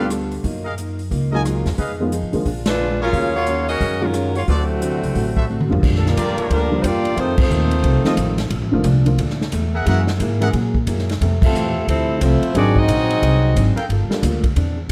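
The saxophone section carries the melody up front with a clear, soft-attack jazz tone, taking hold at 2.7 seconds in this brassy, swinging big-band piece at 179 BPM in 4/4. A tight trumpet section with vibrato and a smooth top punches out stabs, and a trombone section with light vibrato adds a second line from 4.5 seconds. A pizzicato upright bass sounds woody and dark, while an intimate baby grand piano with audible action noise and short sustain plays accompaniment, joined by a picked steel-string acoustic guitar sitting in the background. The airy, polished drum kit, with a punchy kick and medium-tuned snare, drives the swing and plays a fill at 5.5 seconds that leads into the second section, and the full band hits several accents along the way. Light reverb and a dark, warm production give the whole ensemble a rounded, cohesive sound, with the passage cut from a longer piece.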